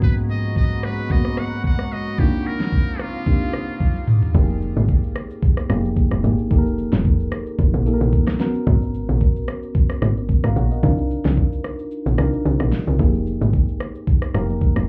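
A swung sixteenth-note groove in four drives this hypnotic, soulful amapiano cut from a longer piece, anchored by an up-front, tape-tinged electronic R&B kit with a knocking kick, fat snare, metallic hats, rim clicks, shaker and toms. Over the opening, a buzzy, thin metal-muted trumpet with light vibrato sings a short solo line through delay, while a deep, warbling vintage pad holds moody minor eleventh chords with chorus, slow swells of sustain and its own reverb, pumping against the beat. A soft, round FM electric piano carries the harmony throughout, its dark tone shimmering through chorus and phaser. After a drum fill at 3.8 seconds, the drop lands at 4.3 seconds. The trumpet has already finished, the pad falls away, and a tight, punchy log drum bass enters up front with percussive, decaying hits. The kick briefly cuts out at 11.9 seconds, and the whole mix sounds muffled, as if heard through a club wall.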